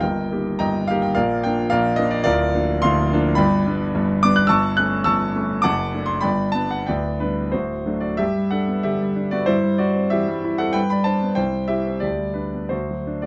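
A grand piano, natural and up front in a close, detailed recording with little reverb, carries this short romantic character piece on its own. The mood is warm and hopeful, moving in 2/4 with a flexible rubato feel that lets the pulse drift between 84 and 112 BPM. The opening harmonies circle around E-flat and B-flat before settling firmly into G major at 3.4 s. From there the music passes through A7 and D chords back home to G. A new section begins at 8.2 s, moving between G and C before leaning toward D as this fragment of a longer work breaks off at 13.3 s. The writing spans a broad register from a deep D1 in the bass up to a high F#6, and the instrument is tuned to A4 = 442 Hz.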